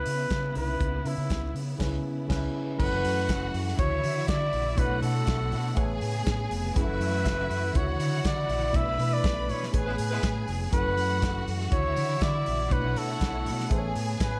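A light reverb and small-room ambience frame this sultry, glamorous disco cut from a longer piece, moving at 121 BPM in a straight 4/4 in F# minor, with a clear, vintage-toned flugelhorn carrying the melody up front through a slapback echo. A worn, slightly out-of-tune tine electric piano and a biting string section sustaining chords in the background sit over an overdriven, punchy fingered bass and a modern studio drum kit with a pumping room sound, the band hitting accents around 1.8 and 8.7 seconds. A lush, bowed second string line enters at 2.8 seconds over a progression of F#m7, Dmaj9, Bm11 and Amaj9, and a horn section adds brief octave-doubled stabs at 9.9 seconds.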